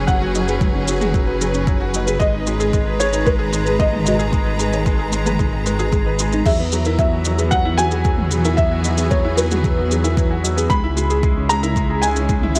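Light reverb surrounds this short, moving and hypnotic piece of piano and strings electronica, set at 113 BPM in a straight 4/4 in G# minor, with chords moving from F#sus4 through G#m and Eadd9 to C#m7. A felt-muted upright piano carries a soft, mellow melody through tape echo, while a clear, woody, slightly detuned upright piano plays a lower riff with the same echo, and a lush, bowed symphonic string section holds vibrato-rich sustained chords under sidechain pumping. Beneath them, a rumbling, detuned sawtooth bass pumps with the sidechain, a round, gentle pluck adds chorused, echoing arpeggios in the background from 0.1 s, and a deep, layered electronic kick pairs with a produced electronic kit of crash cymbal, shaker and toms, both with a small-room character.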